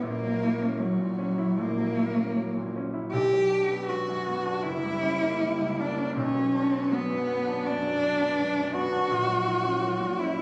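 A single bowed cello, sung close and up front with vibrato, soft attacks and sliding portamento, carries a solemn, yearning romantic melody in free rubato over a bright, brilliant concert grand whose deep bass and short-sustained chords sit a little lower in the mix, both heard through the wet bloom of a recital hall, captured on a phone in the room with added club reverb and compression, in this 10.4-second fragment of a longer piece.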